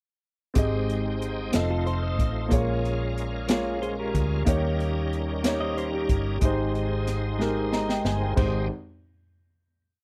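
Soulful and uplifting, this short slow gospel piece moves at 62 BPM in a straight 6/8, settled in Ab major with a chord progression that moves from Abmaj7 through F7, Bbm7 and Eb7 before returning home. A woody upright piano carries the accompaniment with a quarter-note chord rhythm in drop-2 voicings, while a bright, shouting tonewheel organ holds sustained chords through a slow rotary speaker and chorus vibrato, adding grace notes along the way. Underneath, a dark, round hollow-body short-scale bass plays a slow gospel line with slides and chromatic approach notes, and a swinging big-band drum kit sets an airy, polished six-eight groove with a high-tuned snare and punchy kick. A clean, compressed electric guitar enters at 1.7 seconds to add short fills in thirds between phrases, then drops out at 6.4 seconds. From 7.4 seconds the drums and piano both play fills leading into a final chord at 8.4 seconds, all captured in a dry, close 1970s-style studio sound with the drums, bass and piano up front.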